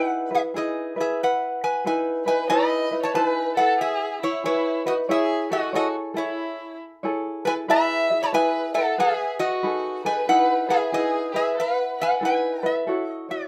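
Hawaiian excerpt, sunny and languid with a gentle swing, where a metallic, nasal resonator slide guitar played with fingerpicks carries the melody up front over a light, thumb-plucked tenor ukulele, while a dark, bowed violin with vibrato and portamento joins at 2.3 seconds to add a smooth, expressive second line, all in light reverb.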